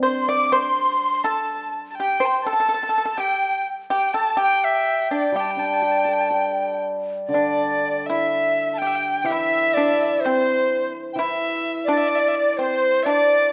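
This Chinese traditional chamber ensemble excerpt has a festive yet pastoral mood, moving at a rubato 62 BPM in 2/4 in the G zhi mode, tuned slightly under standard pitch to A4 = 438 Hz. The bamboo dizi carries the melody up front and close-miked, its buzzing membrane giving an airy edge, with tongued notes and vibrato. Beneath it, a single bowed erhu sings a clear, smooth, even second line with vibrato and portamento, while the pipa adds a dry, percussive second line played with fingerpicks. The hammered dulcimer sounds briefly at the opening, then returns at 5.3 s with bright, shimmering, ringing accompaniment through to the end at 13.5 s, and the music shifts into a new section at 7.3 s. A moderate scoring-stage reverb surrounds the group in a dark, warm production.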